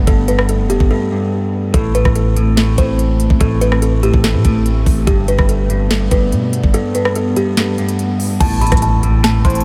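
Dark and brooding, this half-time trap excerpt pairs a buzzing, woody kalimba melody with tape echo, a clean hollow-body electric guitar, a warbling lo-fi pad colored by chorus and phaser, and a deep, mellow 808 bass, all driven by an overdriven, up-front trap kit with a knocking kick and crisp hats. A velvety background synth lead arrives at 8.4 seconds as the harmony moves back to A minor, followed a moment later by a very quiet impact.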